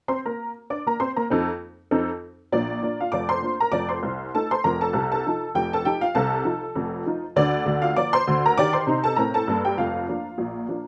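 Jaunty and playful, this short ragtime piano excerpt swings along in 2/4 on a lone honky-tonk upright piano, its detuned, jangly, woody tone sitting up front with short sustain and light reverb. Played from 0.1 to 10.9 seconds, it moves from an opening passage into a new section at 2.5 seconds, cycling between Bb and F7 before passing through Bb/D and Cm to settle on Bb/F. The rough home-demo sound gives it a vintage, open character.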